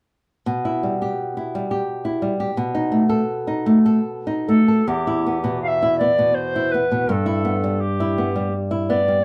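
Light reverb gives this short passage the air of a duo playing live in one room, cut from a longer piece. It is a romantic, elegiac work for recorder and classical guitar in E minor and 3/4, with a rubato feel around 70-89 BPM and a yearning mood. A dark, small-sounding nylon-string guitar begins at 0.5 seconds, fingerpicking an up-front accompaniment over Em/B and B7. The tenor recorder enters with the melody at 4.5 seconds, its pure, wooden straight tone carrying a soft attack and a touch of chiff. Both parts continue over Em and Em/G until the passage ends at 9.2 seconds.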